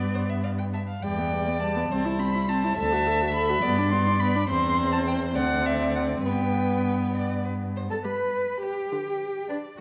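Spirited and graceful, this quick classical-period string quartet movement in G major and 6/8 at 69 BPM, cut from a longer piece, sets a rich, vibrato-laden first violin singing the melody high above a warm second violin line, a smooth viola accompaniment and a rich, up-front cello bass, all bowed evenly in a dark production with a moderate scoring-stage reverb, moving through G, Em, C6 and D before a fresh section begins at 8.0 seconds.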